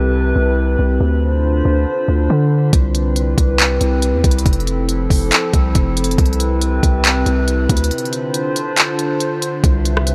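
A half-time groove at 139 BPM drives this dreamy, blissful stretch of atmospheric cloud-rap in C major, cut from a longer piece. A warbly, nostalgic lo-fi pad with chorus, built-in reverb and sidechain pumping holds sustained chords over a deep, mellow sine 808 bass from the start, moving through Cmaj7, Dm7 and Fmaj7. The smooth R&B drum kit, with its soft kick, handclaps, hi-hat and rim click, enters at 2.7 seconds, and a break arrives at 7.9 seconds inside a light digital ambience.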